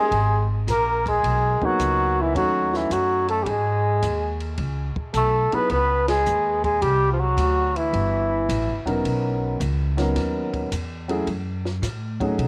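Small-group swing and bop jazz with a cool, late-night mood, this brief excerpt moves at 108 BPM in 4/4 with a swung eighth-note feel, starting in G# minor and shifting to C# minor at 4.6 s. A breathy flugelhorn carries the melody with a soft attack, light vibrato and a whispered, intimate tone, sitting up front yet roomy, while a subtoned tenor saxophone with scooped notes plays a second line from a distant, roomy place; both horns carry tape echo and drop out at 8.9 s. A concert grand piano with deep bass comps up front, and a woody pizzicato upright bass on steel strings holds the low end. A compact cocktail kit with dark cymbals, a high-tuned snare and a punchy kick sits low in the mix, working hi-hat, ride, snare and kick in a tight booth sound. The band hits an accent at 6.0 s, and the harmony travels from G#m7 through C#7sus2 and Bmaj9 to F#madd9, with piano, bass and drums carrying on to the end in a small room with light reverb.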